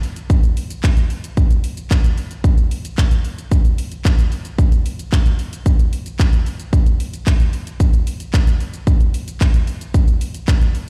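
Bittersweet yet confident, this short pop cut runs at 112 BPM in a straight 4/4 feel. A single electronic pop drum kit carries the whole passage from 0.0 to 10.9 seconds, built from kick drum, hi-hat, handclaps and shaker. The kit sounds layered and polished, with a punchy kick sitting up front. The sound is mostly dry, yet it comes across as if played over a big sound system in a bare room with a large studio reverb. Taken from a longer piece, the clip stays in one section throughout, giving a self-assured pulse.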